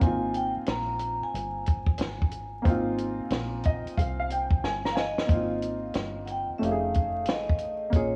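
Smooth and relaxed, this short jazz-hop cut at 91 BPM in Ab major swings over a dry cocktail drum kit with a punchy kick and high-tuned snare and a dark, round fingered electric bass, while a woody, slightly detuned upright piano accompanies up front and adds a fill at 3.3 seconds, a ringing vibraphone carries the melody through tape echo, the drums fill at 4.6 seconds, and the harmony turns to an altered F7 at 6.6 seconds, the whole mix coloured by worn, warbling cassette drift, vinyl crackle and light small-room reverb.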